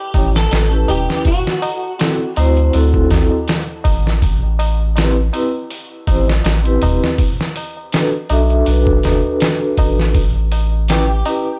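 A swung sixteenth-note groove from a compressed, pitched-down sampler-style drum kit with a thumpy kick and medium-tuned snare drives this dark, melancholic trip hop piece, joined by a round, deep analog bass up front, a mellow soft-mallet vibraphone accompaniment ringing through tremolo and tape echo, close, high-tuned tabla, and a bright, twangy clean electric guitar that picks a brief melody through ensemble chorus and dub echo at the opening and returns at 10.9 seconds, captured in a dry, gritty hardware sound.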